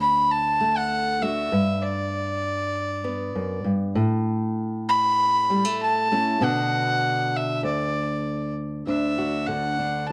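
Warm and pastoral, this short fragment of acoustic folk moves at 98 BPM in D major, with a single bowed fiddle carrying the melody up front in a nasal, reedy gut-string tone touched by plate reverb, over a fingerpicked steel-string acoustic guitar whose woody, old-string sound supplies the accompaniment through D, G and Bm before settling on Dadd9 at 8.9 seconds, inside a dark, warm production with light reverb.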